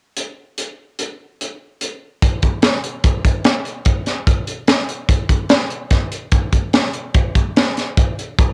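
Wistful and intricate, this short rock excerpt cut from a longer piece moves at 146 BPM in a straight 5/4, carried entirely by a crisp fusion drum kit of hi-hat, punchy kick and high-tuned snare. The acoustic kit sits up front with a saturated, gritty cassette character and a pumping small-room sound, playing from 0.2 to 8.5 seconds. Captured as a home recording in a modest booth ambience, it shifts into a new section at 2.2 seconds.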